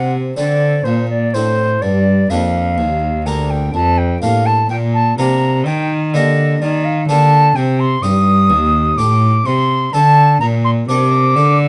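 A pure-toned silver concert flute carries the melody with a crisp attack and expressive phrasing, sitting up front in this flowing, solemn baroque-style sonata movement in G minor at 63 BPM in 3/4. Beneath it, a single bowed cello supplies a rich, intense bass line with vibrato, while a brilliant, airy Italian-style harpsichord fills in the plucked continuo accompaniment through a progression that moves from D7 to Gm, Cm and finally Bbadd9. The close, detailed recording has little reverb, and the fragment runs for about 11.7 seconds as part of a longer piece.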